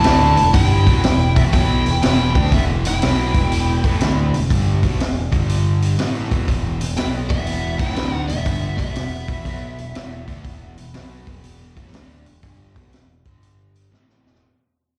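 From the first beat, a biting overdriven lead guitar carries the melody above a darker second lead line, while a crunchy double-tracked rhythm guitar plays a riff over a growling, bright overdriven bass and a punchy vintage kit with a high-tuned snare, the three guitars touched with slapback echo. This smoky, gritty blues rock and southern rock power-trio piece swings at 121 BPM in E minor, moving between Em and G5, and sounds like a live club gig heard through the venue's PA with small-room ambience and club reverb. The whole passage is fading out; the two leads stop at 13.9 seconds as a drum fill carries it to the cut at 14.4 seconds.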